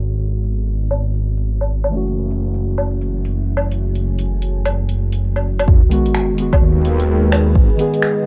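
Rainy and melancholic, this swung future garage piece at 128 BPM in G# phrygian drifts between G#m7 and F#m7 as muted, felt-like synth keys with chorus and analog delay and a brooding, chorused analog pad under a filter sweep both pump against the sidechain alongside a menacing, saturated detuned saw bass, while a tape-toned deep house kit of finger snaps, hi-hat and woodblock ticks along, a deep, up-front electronic kick and a sub drop impact land at 5.7 seconds, and vinyl crackle and a low-pass filter leave the nearly dry mix hazy and close.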